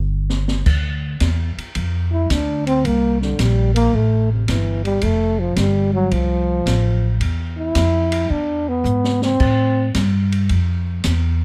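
Recorded close and dry, with detailed microphones and little reverb, this short cut from a longer small-group swing and bop piece has a playful, relaxed mood and a swung 4/4 feel. A breathy trombone carries the solo, its dark, whispered tone marked by a soft attack, light vibrato and scooped notes, sitting up front in an intimate jazz voice. Beneath it, a woody pizzicato upright bass with steel strings, also up front, anchors the low end as the chords move from Dm to C5, Fadd9, E and Am7. The open drum kit sounds natural in its studio room, pairing dark cymbals with a high-tuned snare and a boomy kick. A brief drum fill opens the cut before the trombone solo starts at 0.7 seconds, and another fill arrives at 8.9 seconds. The trombone falls silent at 9.9 seconds while the bass and drums carry on, the bass sounding through to the end.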